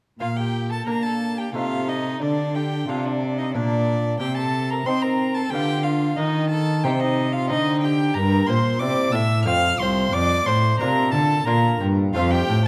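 A moderate concert-hall reverb, with a decay of about 2.0 seconds, surrounds this short cut from a longer baroque-style sonata movement with continuo, which flows in a dance-like triple metre with a rubato feel. Two bowed violins, each a single player with vibrato, carry the upper voices from 0.2 to 12.7 seconds. The first has a rich, focused tone and sings the melody high above the staff, while the second, with a smooth top, traces a lower companion line. Beneath them, a dark, woody solo cello holds the bass and sits most prominently in the balance. A delicate, fingerpicked lute with gut double strings, some of them octave-doubled, fills in the harmony. The chords begin on the home chord, pass through a minor-key stretch around C minor and its dominant, and close on F at 12.1 seconds.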